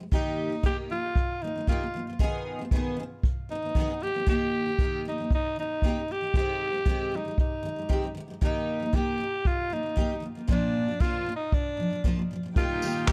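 A raspy, gritty alto saxophone with light vibrato and tape echo carries the melody up front in this carefree acoustic pop piece at 116 BPM in Eb major, over a full-bodied, double-tracked picked steel-string guitar and a small-room jazz brush kit with punchy kick, handclaps and tambourine. The chords move from Eb through Abm/Eb and Abmaj7/Eb to Bb and home to Eb, and the dark, warm production with light reverb keeps the mood easy-going. In the closing moments a very quiet felt-muted upright piano with audible action noise enters at 12.5 seconds, and a soft-attack, sul tasto string section joins in the background at 12.6 seconds, just before the recording is cut off.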